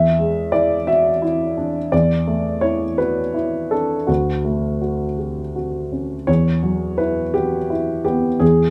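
Melancholic and reflective, this brief excerpt of neoclassical minimalist piano drifts in a rubato 6/8 at 56 BPM in E dorian, tuned to A4 = 441 Hz. A dark upright piano plays alone from 0.0 to 8.7 s, sounding woody, mellow and intimate, with audible action noise and an up-front, vintage presence that spans D2 to E5. Its harmony moves from E7 through Asus4/E and Dmaj7 before settling on Emadd9 at 6.3 s, all in a moderate studio reverb that gives a live, single-room feel.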